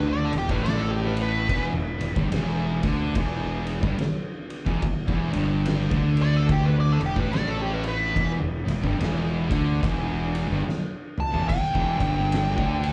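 A wah-soaked fuzz lead guitar solos across the whole 12.9-second cut, its distorted, compressed tone carried by slapback echo and analog delay, over a sludgy, hypnotic stoner and doom metal groove in E minor at 72 BPM with a swung 4/4 feel, all resting on an Em chord. Beneath it, a round, punchy overdriven bass sits up front, a bright double-tracked fuzz guitar holds the riff in the background, and two very quiet, dark thick fuzz guitars play the same low riff. An oversized low-tuned drum kit with a fat snare, boomy kick, crash, ride and toms enters at 0.3 seconds and plays a fill at 10.7 seconds, the whole performance heard live through a club PA with light reverb.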